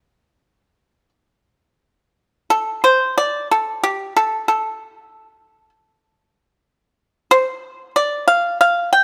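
Chinese traditional solo plucked-string music, elegant and contemplative, in which a lone pipa played with fingerpicks sounds percussive and dry, sitting up front between G4 and G5 in the D yu mode at a rubato 93 BPM in 4/4, captured by close, detailed microphones with little reverb in a 9-second cut from a longer piece that moves into a new section at 1.8 seconds.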